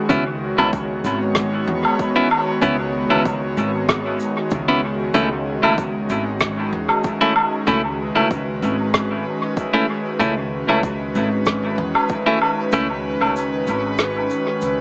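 An airy, breathy pad sits up front in this hazy, meditative ambient dub excerpt, its detuned sawtooth and triangle layers, noise, ring modulation and chorus blending into a mellow, full-bodied haze that holds long chords from C#m7 to A at 5.1 seconds. A bright, twangy clean electric guitar, picked and compressed, also sits forward with short stabs trailing dub echo, and it drops away at 12.9 seconds. Underneath, a woody pizzicato upright bass with steel strings moves low and softly at 95 BPM in 4/4, with a gentle swing on the sixteenths. Shaker, woodblock and rim click, played with brushes in a small room, add a mid-forward, rolled-off patter with its own dub echo. A deep, overdriven electronic kick drum lurks in the background until 12.2 seconds. A moderate spring reverb and a small-speaker tone give the whole mix a lo-fi, hazy cast.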